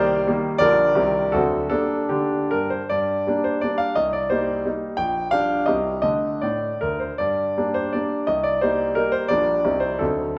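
A clear, polished concert grand piano plays alone and up front, with a deep bass, in a capricious, nostalgic romantic dance in triple time and G minor, its dotted rhythms pushed and pulled by rubato between 142 and 189 BPM. Cm7, Gm/Bb and D7 harmonies return to G minor, and after 2.9 s a new section extends these cadences, ending at 10.0 s on a tense D7b9. The piano sits in a wet recital hall reverb, and this fragment is cut from a longer piece.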